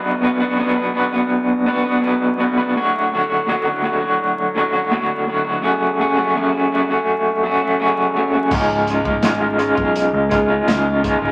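Vinyl crackle and a wet small-room reverb frame this trippy, mysterious psychedelic rock fragment, where a slightly broken-up, lo-fi electric guitar through a small old amp plays an up-front, compressed, tremolo-soaked riff over Bm, D and F#m alone until 8.5 seconds, when a picked electric bass and a gritty, saturated breakbeat drum kit with dark cymbals and a punchy kick come in beneath it on a C# chord.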